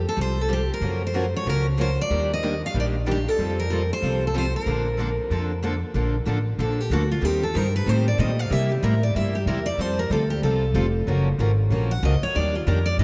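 Bright, full-bodied steel-string acoustic guitar sits up front carrying the melody, then takes a solo from 5.9 seconds in this lively, swinging excerpt of acoustic string swing in Bb major at 187 BPM. A woody, thumpy upright bass on gut strings holds the low end, while a boxy concert guitar and a parlour guitar with audible finger squeak, the latter set further back, supply accompaniment over chords such as Gbmaj7, Eb6 and C7. The whole group rings out in a vast, echoing cathedral space with a long reverb, and the top end is rolled off.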